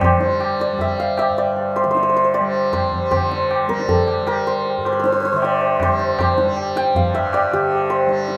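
Hindustani classical music, meditative and solemn, heard in a short cut from a longer piece in raga bhimpalasi. A bright, hammered santur carries the melody up front with a shimmering ring, over a softly plucked, buzzing tanpura drone and a high-tuned tabla with a short ring that sounds distant, as if in a large room. Light reverb and studio ambience frame this rough home demo mix, and the music moves into a new section at 3.1 seconds.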